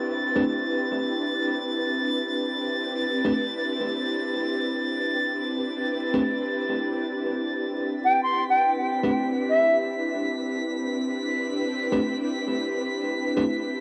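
A silver concert flute stands out, its pure, metallic tone carrying a brief, expressive melody with vibrato from 8.0 to 9.8 seconds. Its attack is crisp, yet it sounds distant, colored by dub echo and cassette tape. This raw, nostalgic drum and bass fragment is cut from a longer piece, floats in free time and rests on a single Am11 chord. Beneath it, an ethereal, airy pad of detuned sawtooth and triangle voices sustains throughout, warbling with ensemble chorus and roughened by vintage 12-bit sampler grit. A glassy texture of drifting overtones hovers calmly up high, while a bell-like tine electric piano places bright, clean stabs through a low-pass filter and dub echo, holding a longer one from 11.9 seconds. The home cassette recording adds vinyl crackle, small room ambience and a moderate spring reverb.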